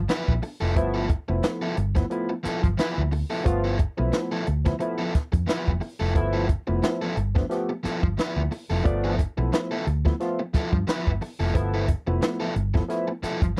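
A dark, round, foam-muted electric bass opens this strutting funk excerpt, fingered up front with a punchy, amped tone that sits low in the register. Almost at once, at 0.1 seconds, a compact cocktail drum kit joins with a dry, natural sound, pairing a tight kick and a high-tuned snare with hi-hat under a loose sixteenth-note swing. An overdriven semi-hollow guitar fills in the accompaniment with a picked, hollow-body character, tucked behind the rhythm section. At 0.4 seconds a bright, barky tine electric piano begins punching out stabs through a combo amp, its clean tone colored by analog chorus. The whole passage rides a single G13 chord, and the close, 1970s-style studio sound keeps the groove intimate and tight, with very little reverb.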